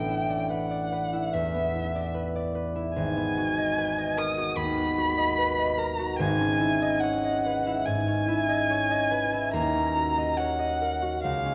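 A bowed violin and a fingerpicked concert harp begin together in this mysterious, wistful impressionist duo in G# minor, cut from a longer piece and moving at a rubato 73 BPM in 4/4. The expressive violin sings a high melody with vibrato and portamento, while the ringing harp lays out a deep-to-middle accompaniment through Asus4, G#m9, C#m9/G# and D#m7 chords. A dark, warm production places both instruments up front in a lush concert hall reverb.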